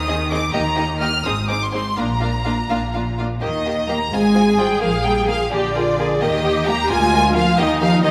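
Up-front, focused first violins carry the melody from the opening moment over bowed cellos and a rich double bass section, with second violins and smooth, distant violas joining at 0.1 seconds. This quick, graceful and spirited classical-period movement for string orchestra, cut from a longer piece, moves in a rubato 6/8 at 86 BPM (dotted quarters) in Eb major, passing into a second section at 3.4 seconds. The warm, lightly vibrato cellos help anchor the bass, and a moderate concert hall reverb surrounds the ensemble.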